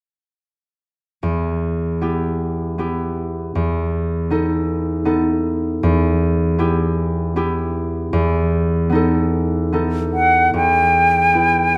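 An airy, close-miked concert flute with vibrato and a soft attack enters up front at 10.1 s over a ringing, fingerpicked concert harp that has carried the accompaniment since 1.2 s, in this solemn, yearning romantic classical duo, a brief fragment of a longer piece in E minor, tuned to A4 = 445 Hz, moving at 77 BPM in a rubato 3/4 between E minor and B7 over E, within a moderate recital-hall reverb.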